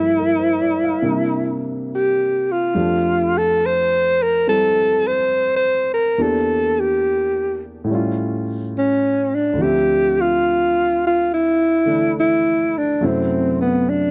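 A breathy, close-miked alto saxophone carries the melody up front in this smoky, wistful jazz ballad, its subtone and vibrato sitting over a baby grand piano whose intimate accompaniment lets the noise of its action come through. The tune moves at 70 BPM in 4/4 with a swung eighth-note feel in D minor, tuned to A4 = 438 Hz, passing through chords such as Gm7, C9 and A7b13 before reaching Dm7 at 9.6 seconds. Cut from a longer piece, it has the dry, close sound of a small 1970s-style studio room.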